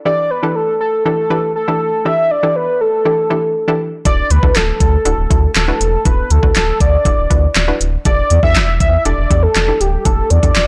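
The velvety synth lead carries the melody up front from 0.1 s, its sawtooth-and-sine tone sustained with vibrato, chorus and a digital delay, in this euphoric, summery dance-pop cut from a longer piece at 120 BPM in D major. Beneath it, a hollow, detuned square-wave pluck with a noise layer plays bouncy, short-decay accompaniment, mellow and chorused and pumping against the sidechain. At 4.1 s a deep sine-and-triangle sub bass with an octave arrives, full and sustained and also pumping, together with an electronic R&B kit of knocking kick, fat snare, handclaps and smooth hi-hats placed up front. The harmony moves from A7sus4/E to Dadd9 at 4.1 s and on to A7sus4 at 8.1 s. Light reverb and a digital ambience surround the parts, while the whole recording is blown-out and overdriven.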